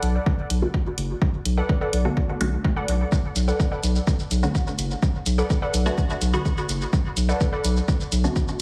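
A round, dark analog bass pumps against layered hi-hat and shaker from the start of this cavernous, meditative dub techno excerpt at 126 BPM in B minor, resting on a single Bm7 chord, before a dry, punchy, overdriven kick arrives up front at 0.3 seconds. A muted, detuned chord stab with phaser, pumping and dub echo follows at 0.6 seconds. From 1.6 to 7.6 seconds, a warbling, lo-fi sawtooth pluck with chorus, phaser and dub echo floats above, all framed by a heavily compressed, radio-like sound with light digital ambience.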